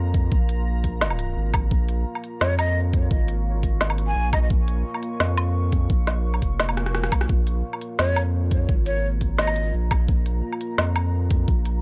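A breathy jazz flute carries the melody in this heavy, spacious half-time drum and bass excerpt at 172 BPM in Bb minor, arriving at 2.4 seconds and again at 8.0 seconds with a soft-attack, straight-toned line dusted in vintage 12-bit sampler grit and tape echo. Beneath it, a deep, moody ambient pad holds sustained chords throughout, its detuned sawtooth layers thickened by chorus and built-in reverb and pumping against the beat. A saturated sub bass with a triangle-like core and fast attack sits up front, thick and sustained across the whole passage. The drums pair an overdriven, knocking electronic kick with a tape-toned kit of woody snare, smooth hats, rim click and woodblock, both re-recorded in a small room and placed close. Around 6.8 seconds a drum fill coincides with a brief electronic swell in the background, and the overall sound stays dry and gritty in a digital space.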